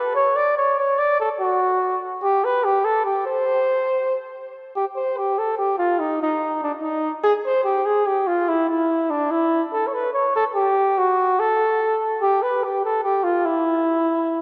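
A lush, wet hall reverb with a long 2.4-second decay soaks this dreamy recording, which is cut from a longer piece. It is jolly, festive alpine folk in 3/4 at 145 BPM with a straight feel. A single flugelhorn plays solo from start to finish, ranging from D4 to D5 in a mellow, classical style with light vibrato. It carries a delay and has a roomy character, sitting up front yet sounding distant. The melody moves through a short opening passage that returns from 4.7 seconds, carrying the festive lilt of the triple time.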